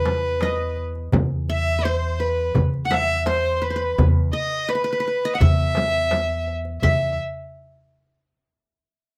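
A rich, smooth bowed violin sings the melody up front with even vibrato in this stately, warm Arabic maqam ensemble piece at 84 BPM in 4/4. A fingerpicked qanun with bright triple strings adds a second line, while a woody, growly pizzicato upright bass holds E2, and a crisp, saturated metal-shell darbuka and a soft-handed frame drum enter together at 0.1 seconds, all captured by close, detailed microphones with light reverb in a short cut from a longer performance.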